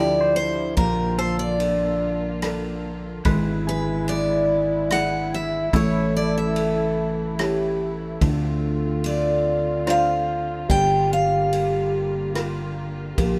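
Light reverb gives this short, intimate passage from a longer acoustic folk-pop ballad a close, heartbroken feel. It moves at a slow 73 BPM in 3/4, in D minor. A bright, full-bodied steel-string acoustic guitar carries the picked melody up front, while a mellow French horn with light vibrato sings a classical-style second line just beneath it. A round, punchy fretless bass anchors the low end. Behind them sit a woody, slightly detuned upright piano with audible action noise, a dark, veiled string section playing bowed sustained chords con sordino, and a twangy, compressed electric guitar adding clean tremolo arpeggios. A natural country drum kit with a punchy kick, ride cymbal and rim click enters at 0.8 seconds, and the chords pass from Bbmaj7 through E7/G# and A to Dm7 and Gm7 before the electric guitar drops out at 11.1 seconds and the acoustic guitar at 11.9 seconds.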